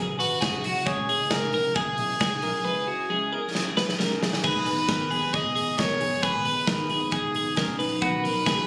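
Captured on a phone in a small room with light reverb and compression, this restless, bittersweet fragment of jangly indie pop in G# minor at 134 BPM sets a brilliant, forceful trumpet melody up front over twangy, clean twelve-string electric guitar arpeggios (both carrying slapback echo), a full-bodied fingerpicked steel-string acoustic guitar and a round, foam-muted electric bass in the background, and a punchy big rock drum kit with bright cymbals whose fill at 3.5 seconds ushers in a ringing, metallic vibraphone second line at 4.4 seconds.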